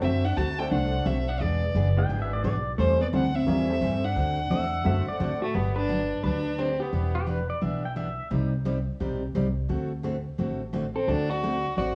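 A clear, intense fiddle with light vibrato carries the melody up front in this cheerful, swinging western swing cut at 174 BPM, shadowed by a dark hollow-body jazz guitar and a twangy pedal steel entering at 2.0 seconds, over a bright dreadnought acoustic guitar, a growly, thumpy upright bass, and a jangly, detuned honky-tonk piano in the background, all with plate reverb except the bass and a cassette-tape tint to the moderate studio room.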